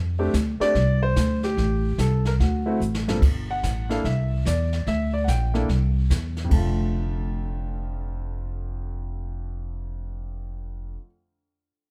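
A woody, growly upright bass opens this swinging jazz piano trio piece in F major at 146 BPM. It is plucked pizzicato and sits up front, while a warm grand piano with a touch of plate reverb carries the melody. Brushes on a kit with dark cymbals and a boomy kick keep the sophisticated, playful mood moving, with a drum fill around 2.8 seconds before the drums stop at 6.8 seconds. The harmony moves through Am7, D7 and suspended colors before settling on F6, all in a close, dry room sound.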